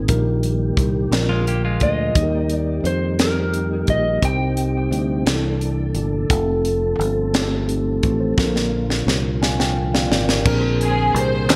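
Swaying in a straight 6/8, this reverent yet jubilant slow gospel passage rests on a mellow tine electric piano, a soft, flute-like tonewheel organ turning through slow rotary speaker and chorus vibrato in the background, a growly, punchy fingered bass and a tight funk drum kit with a high-tuned snare and gated reverb, while a bright, twangy clean electric guitar adds a brief second line at 1.3 seconds, a slightly broken-up slide guitar carries the melody with subtle chorus and digital delay, a drum fill arrives at 8.4 seconds, and a lush, woody string section takes the melody at 10.8 seconds as a crisp group handclap lands at the close, all set in plate reverb with bright 1980s-style digital production.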